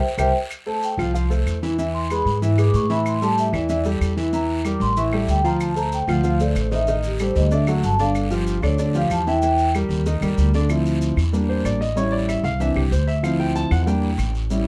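A straight 4/4 pulse drives this fiery, sophisticated Afro-Cuban jazz passage, cut from a longer piece. Woody claves sit close and dry in the background, joined by a raspy, compressed guiro and grainy, mellow maracas heard as if in a small room. Up front, a growly pizzicato upright bass with steel strings anchors the low end. A concert grand piano accompanies with an intimate, natural tone, its deep bass and audible action noise close at hand. As a brief band accent opens the passage, a vibraphone played with soft mallets leads with a ringing, metallic, vintage, band-limited voice and slow motor vibrato, soloing until 9.7 seconds. At 10.7 seconds the piano steps forward for its own solo over minor-seventh and half-diminished harmony, all within light reverb and a dark, warm production.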